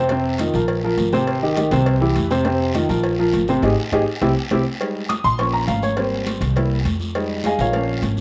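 A dark, boxy baby grand piano sits up front alongside a woody, thumpy pizzicato upright bass, opening this fiery, passionate salsa excerpt in F minor at 204 BPM, with the piano carrying a worn cassette-tape character and audible action noise. Damped, high-tuned congas and a tight cowbell join in the background, along with a raspy guiro. A drum fill and band accent arrive at 3.6 seconds before the mellow piano takes a solo from 4.8 seconds, all set in a moderate spring reverb with small-room ambience and an intimate home-recorded feel.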